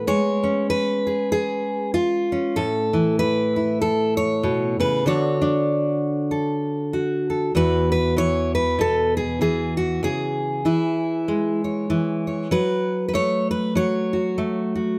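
Swung eighth notes at 96 BPM in 4/4 carry this pastoral folk piece in E mixolydian, taken from a longer work and played by a lone fingerpicked steel-string acoustic guitar. The jumbo guitar sits up front with a bright, full-bodied tone and audible finger squeak, set in light reverb as it moves through chords such as C#7/G#, A and Dmaj7. At 7.5 seconds a second section begins, turning to Esus2, C#m and F#m.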